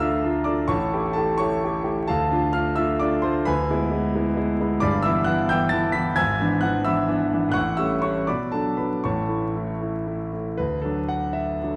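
Romantic classical character piece for solo piano, this short extract from a longer work moves in a lilting 6/8 at roughly 76-91 BPM, counted in dotted quarters, with a free, rubato feel. A clear concert grand carries everything alone, ranging from G1 up to B6, its deep bass and long sustain placed up front with a natural tone. The harmony opens in a darker D minor colour, leaning through A7 and E7 over a D bass, before settling into D major from 4.8 s, which gives the mood a hopeful, passionate lift. Passing through Em7, E7 and Bm, the progression reaches A and then resolves onto D at 10.6 s, where a new section begins and runs until the cut at 11.8 s. A wet scoring-stage reverb surrounds the piano, and a vinyl crackle sits beneath it, lending the sound a worn, nostalgic patina.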